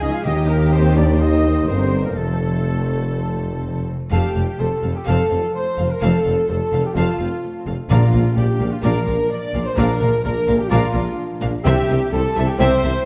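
A straight 4/4 pulse at 127 BPM drives this heroic, cinematic adventure cue, cut from a longer piece and carrying an adventurous, triumphant mood through chords moving from Eb and F to Fadd9, Bb and C. A rich, lush violin section carries the melody from a distant seat in the orchestra, while a second violin section, a clear oboe and a pure concert flute with a crisp attack weave supporting lines in the background. A very quiet viola section fills in the accompaniment, and a mellow French horn section holds sustained chords, joined by tight stabs from a clear trumpet section and ringing, fingerpicked arpeggios from a concert harp. The low end is deep and full, built from a dark, woody cello section, a bowed double bass section with a soft attack, and a roomy solo tuba. Timpani struck with medium mallets sound close and dry, entering only at 0.3 seconds and again at 7.9 seconds. The whole orchestra sits in a wet scoring-stage reverb with a dark production.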